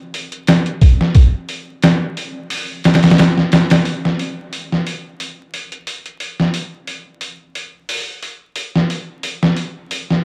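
A thumpy, pitched-down sampler-style drum kit of kick, medium-tuned snare and hi-hat sits up front from 0.1 s, compressed, muffled and overdriven as if re-recorded in a small room, moving with a light sixteenth-note swing in 4/4 through this dark, cinematic trip hop fragment whose dark, warm production carries vinyl crackle and light reverb and moves into a new section at 3.9 s.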